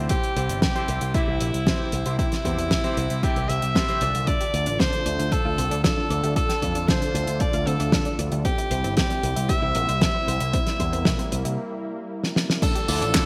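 A straight 4/4 italo disco groove from a punchy electronic kick and a dry, damped 70s drum kit with a fat snare, handclaps, hi-hat, tambourine and dark crash cymbal drives this danceable, melodramatic excerpt, where a picked electric bass with an envelope filter and clangy vintage electric grand piano stabs open before a lush, warbling unison pad and a round analog pluck playing arpeggios arrive at 4.3 seconds, all under an edgy, forceful alto saxophone melody with scooped notes and digital delay, in a bright 1980s-style digital production with a moderate hall reverb.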